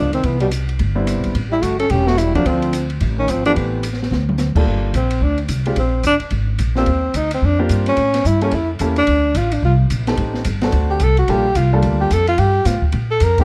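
Small-group swing and bop jazz at a brisk 217 BPM in G minor carries a cool, late-night mood, with a breathy, subtone tenor saxophone leading up front and taking a solo from 4.7 seconds over woody pizzicato upright bass, an open kit that plays a fill at 4.1 seconds and has dark cymbals and a boomy kick, a clear baby grand piano with audible action noise entering at 1.0 second, and a punchy, forceful trombone second line that stops at 3.6 seconds, all in a dark production with light reverb.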